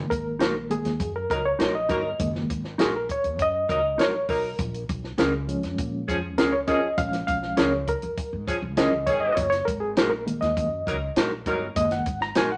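Joyful and uplifting, this uptempo 1960s-style soul excerpt at 100 BPM in F# major features a barky, reedy electric piano soloing up front with light overdrive and fast tremolo, over a woody, thumpy pizzicato upright bass, a dry cocktail drum kit with a high-tuned snare and punchy kick, clean fingered electric guitar stabs, and a tight, vintage horn section with light vibrato carrying a second line from 1.3 s, all in a moderate studio reverb as the chords move from F#6 to A#m7 and back.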